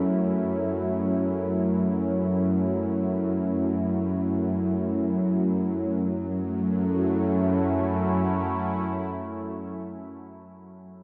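Dark ambient drone in free time and F# minor, desolate and dark, resting on a single F#m chord through this short excerpt cut from a longer piece. A sweeping resonant pad holds sustained chords up front until 10.1 seconds, its detuned sawtooth tone airy, bright and evolving under a filter swell and chorus, while a tense, string-like bowed-like drone sits low beneath it with vibrato and its own built-in reverb, ring-modulated and noise-layered. A very quiet bronze singing bowl adds metallic, slowly beating ringing texture until 6.1 seconds, all set in a dark production with a long cathedral reverb.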